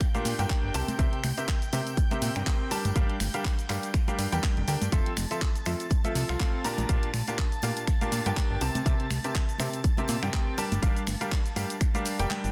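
Bittersweet and soulful, this piano house excerpt rides a gently swung groove and cycles through Bb6, C7, Gm7 and Fmaj7 chords. A bright, worn grand piano carries the riff up front, its short-sustain notes trailed by digital delay and pumping against the kick. Beneath it, a fat analog bass with a detuned sawtooth-and-square tone, saturation and a fast filter pluck pumps in the same way. The punchy, layered electronic kick sits forward, while a house kit of finger snaps, handclaps, hi-hat and shaker, with soft clipping on the snare, fills out the rhythm alongside hard-handed tambourine and congas further back. A veiled, con sordino studio violin section holds sustained bowed chords with vibrato in the background, also pumping. The dense, heavily limited mix sits in digital ambience, and the kick drops out shortly before the end, leaving the other parts to carry the final moments.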